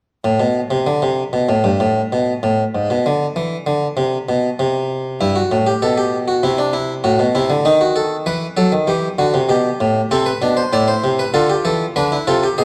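Serious and driving, this short cut from a longer piece is a baroque-style three-part fugue for solo harpsichord, moving in a steady, straight four. The harpsichord plays alone from 0.2 to 12.6 seconds, ranging from G2 up to D5. It sits close and up front, its plucked tone bright and full, with the single-strung character of a Flemish-style instrument and a dry immediacy despite the moderate recital-hall reverb around it. The opening unfolds before any harmony settles, then from 5.2 seconds the chords pass through Em/G, Am/C, B7/D#, Em and Am before reaching Dm near the close. A worn, old cassette-tape quality colors the whole recording with a warbly drift in pitch.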